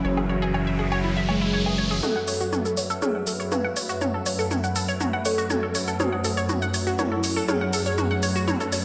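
Hypnotic and dramatic, this melodic techno passage in F# minor moves at 121 BPM in a straight 4/4, cut from a longer piece and bathed in a dreamy plate reverb. It opens over a C#m/F# chord with a gritty, nasal, distorted synth bass holding F#1 up front alongside an electronic riser, both falling away at 2.0 seconds as the harmony settles on F#m and a build-up begins. A layered, tape-warm techno kit of smooth hats, shaker, toms and woodblock sits up front from 0.2 seconds, adding a fill through the build. A round, bright analog pluck spins detuned arpeggios with chorus and delay, while a smooth, expressive portamento lead with vibrato sings in the background, joined from 2.0 seconds by an eerie, inharmonic FM bell as a second line. Beneath them a sustained, detuned analog pad, a very quiet swarming drone and a blurred, cloudy granular pad thicken the atmosphere, and filter sweeps on the pluck, lead, bell and pad drive the tension through the closing seconds.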